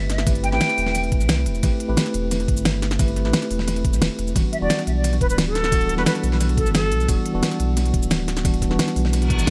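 Rolling and soulful, this short excerpt of liquid drum and bass moves at 176 BPM in a straight 4/4, sitting in A dorian with the harmony shifting from Am7 to Em7 at 4.4 seconds. A mellow tine electric piano carries the chords with a vintage 12-bit sampler grit and analog delay, while a deep, round sine sub bass with a fast attack and tube saturation holds down the low end. The pop drum kit sits up front with a fat snare, crisp hats, cabasa and ride cymbal, layered with a knocking, tape-toned electronic kick. An airy silver concert flute with vibrato and lifted highs sings the melody in short expressive phrases, briefly near the start and again from 4.5 to 7.1 seconds, its soft attack trailed by analog delay. A reverse cymbal rises in at 9.2 seconds, and the whole mix is echo-heavy with light reverb.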